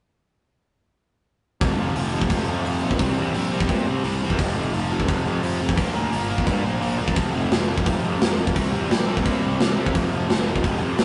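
A double-tracked, distorted electric guitar leads this rowdy, energetic punk rock excerpt at 173 BPM, driving a bright, compressed riff over chords moving from F5 through C and Bb5, with all parts entering together at 1.6 seconds. A growly, fuzz-laden picked electric bass adds punch beneath, while a big acoustic rock drum kit with a punchy kick and medium-tuned snare sits up front. The rough rehearsal-room sound carries light reverb and a dull top end, and the clip is cut from a longer piece.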